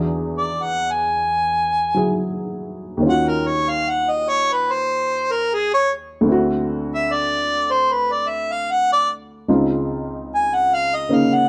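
The recording has a dark, intimate sound with light reverb, and it is cut from a longer piece. It is a late-night jazz ballad in 4/4 at 74 BPM, with a swung eighth-note feel. A woody, slightly detuned upright piano sits up front, playing a short-sustained accompaniment from the very start. A mellow harmonica enters at 0.4 seconds and carries a jazz-style solo for the rest of the clip. Its light vibrato and scooped notes have a roomy, distant quality. The harmony moves from E9 to Ebm9, then D9, and settles on Dbmaj9 at 9.5 seconds.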